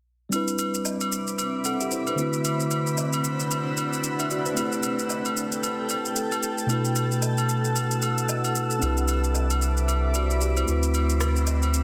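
A swung sixteenth-note groove of layered electronic shaker and rim click, alongside acoustic agogo bells and woodblock with a live-room feel, drives this warm, soulful amapiano passage cut from a longer piece. A clean tine electric piano with a phaser sits up front, playing jazzy chords such as Cmaj9, D13, Am9 and D69/B. From 0.9 seconds, a bright, cloudy granular pad with detuned unison layers, slow attack and its own reverb sustains above it, and at 8.8 seconds a deep, round sine sub bass arrives, all within a dense, heavily limited master with light digital ambience and a faint mains hum.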